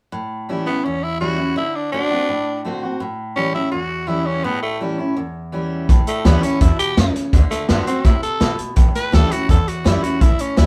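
A straight, brisk four-four pulse drives this retro, upbeat rockabilly fragment, cut from a longer piece. A bright, full-bodied picked steel-string acoustic guitar opens the accompaniment at 0.1 seconds, moving between A7 and D7. At 0.7 seconds a raspy, growling tenor saxophone takes the lead up front, breathy and gritty with a light vibrato. At 5.9 seconds the band fills out, as a woody, plucked upright bass and a roomy vintage drum kit with a tight kick, a medium-tuned snare, hi-hat and a rolled-off top join in. The players sound as if they share one room, with light reverb lending the recording a live, vintage character.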